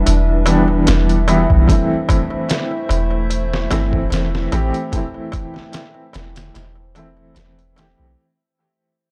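A deep, round 808-style bass sits up front in this brooding, smoky trip hop clip, joined by a soft, felt-muted upright piano with tremolo and tape echo, a gritty, pitched-down sampler drum kit with a thumpy kick, a warbling, nostalgic tape-like pad in the background, and a crisp, metal-shelled darbuka played with soft hands, the whole dark mix fading out over its 8.2 seconds.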